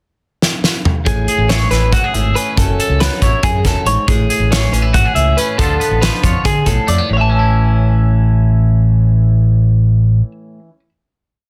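A dry, dense and heavily limited master keeps this short math rock and midwest emo piece close and crowded, with little room sound beyond the drums' own pumping studio space. The mood is playful and wistful, riding a straight 7/8 groove. A loose indie acoustic kit opens with a fill at 0.4 seconds, its fat snare and punchy kick sitting up front alongside hi-hat and toms. At 1.1 seconds the overdriven fingered bass arrives loud and forward with a syncopated riff, while a twangy clean electric guitar plays syncopated fingerstyle accompaniment and a compressed twelve-string electric guitar circles a warm picked arpeggio ostinato, shimmering with subtle chorus. The chords move through Amaj7, F#m7 and Dm6, and after the drums drop out at 7.0 seconds the strings settle onto a sustained final A chord.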